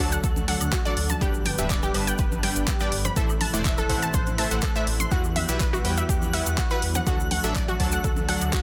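A punchy, layered electronic kick anchors this dreamy, bittersweet progressive house fragment, alongside a deep house kit of handclaps and hi-hat, a grainy egg shaker, and background cowbell, woodblock and congas struck with hard hands, while a rumbling, saturated detuned saw bass, bright unison-pluck arpeggios and evolving supersaw stabs (both carrying dub echo), a thick, warbling vintage pad with chorus, and a sparkling granular shimmer with its own reverb all pump to the sidechain over a D, G, Am, Emadd9 progression in a dense, heavily limited mix.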